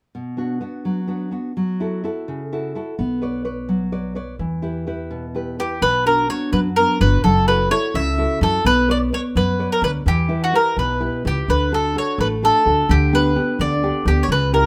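A lilting 6/8 sway carries this wistful, passionate Italian folk serenade, cut from a longer piece, opening with a full-bodied, fingerpicked nylon-string guitar up front, its finger squeaks audible over minor-key chords. A dark, thumpy pizzicato upright bass joins at 3.0 seconds, and at 5.6 seconds a bright, woody mandolin with doubled strings takes the picked melody up front. A moderate studio reverb gives the trio a sense of space.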